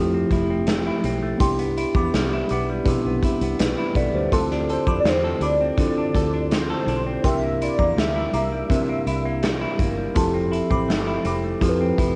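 A mellow tine electric piano, a dark semi-hollow guitar with subtle chorus and warbly pitch drift, and a round fingered bass open this lonely, wistful indie and bedroom pop excerpt, joined at 0.3 seconds by a gritty, saturated garage drum kit and at 1.4 seconds by a glassy, crystalline synth bell with tremolo and tape echo, while a velvety, detuned synth lead carries the melody from 4.3 seconds, all captured as a home cassette recording in a modest booth ambience.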